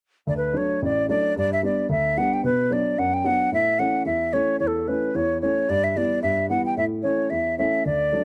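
At 0.3 seconds a wooden flute and a dark baby grand piano enter together, opening a rollicking, lively Celtic folk passage cut from a longer piece. The tempo is a brisk 222 BPM in 4/4, with a light swing on the eighth notes and tuning set slightly high at A4 = 441 Hz. The flute carries the melody up front with an airy, woody tone, vibrato and a crisp attack. Beneath it, the piano accompanies in its lower and middle register, sounding mellow and boxy with short sustain and audible action noise that gives it an intimate, close presence. The harmony moves from D through G, Bm and A, then to Em/G and back to A before the passage ends at 8.2 seconds. The sound is dry and close, like a 1970s studio session, with a touch of small room ambience.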